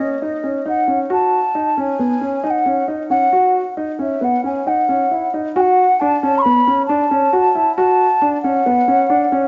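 Progressive instrumental at 135 BPM in 5/4, tense and brooding, where a hollow wooden flute with vibrato carries the tongued melody over a dark baby grand piano's long-sustained arpeggios, shifting from F# dorian to F# minor at 5.6 s, all cut from a longer piece and colored by wet spring reverb, small-room ambience and a muffled cassette-tape sound.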